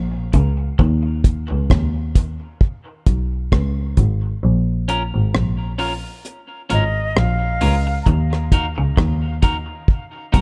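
Dub reggae at a slow 66 BPM in 4/4, with a light swing on the sixteenths, this spacious, deep excerpt moves from B-flat minor through a rootless A-flat suspended chord and back, landing on E-flat minor near its close. A bright, bowed double bass with vibrato sits up front throughout, focused and singular. A dry, dark drum kit with a tight kick, rolled-off top, hi-hat and rim click comes in at 0.3 seconds; the opening stretch to 4.4 seconds is a break, and the kick drops out between 4.4 and 8.1 seconds. A clean, hollow-body electric guitar plays a picked, compressed riff in the background through analog chorus and dub echo, heard at the very start and again from 8.1 seconds. A slightly broken-up electric guitar adds echoed accompaniment from 4.9 seconds, while an airy, distant metal flute with a crisp chiff offers a brief, expressive melody phrase with dub echo. Small room ambience and a dark, warm production frame the whole.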